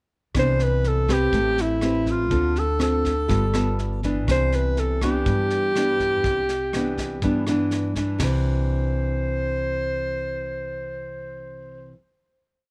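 A light reverb gives this short, complete bossa nova a soft room glow, with the sax carrying plate reverb and sitting up front. At 122 BPM in a straight 4/4 in C major, the mood is sophisticated and romantic. The mellow alto saxophone plays a jazz-style, motif-based solo melody in period phrases, using subtone, light vibrato and scooped notes with a smooth top. Beside it, the fingerpicked nylon-string guitar, its old strings sounding woody and classical, plays thumb bass under syncopated plucked chords. The pizzicato upright bass plays a growly two-feel of roots and fifths, and a vintage brush kit adds a bossa groove with a punchy kick, a medium-tuned snare, rim clicks and a rolled-off top. After the progression from Cmaj9 through Am9, Dm7 and G9 starting at 0.4 seconds, the drums drop out near 8.2 seconds and the band settles on a Cadd9 that lasts until 12.0 seconds.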